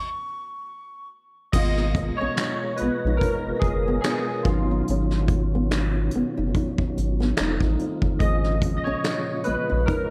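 Introspective and smooth, this neo-soul R&B excerpt at 72 BPM in G# dorian opens with a breathy, close-miked silver concert flute alone on a high C#6 in a diffuse ambient delay, set against a stop and a filter sweep before the band arrives at 1.5 seconds on a G#m69 chord. From there a barky, lightly overdriven tine electric piano takes a solo through ensemble chorus, over a tonewheel organ's sustained chords with key click and slow rotary speaker, a round, deep analog bass with a nasal ring-modulated edge, a vintage brush drum kit with dark cymbals, punchy kick and finger snaps, and a thumb-plucked nylon-string guitar line tucked in the background under lush chorus and delay. Swung 16ths and a dreamy plate reverb of 2.4 seconds carry the harmony through C#9sus4/G#, F7 and A#m7/G#.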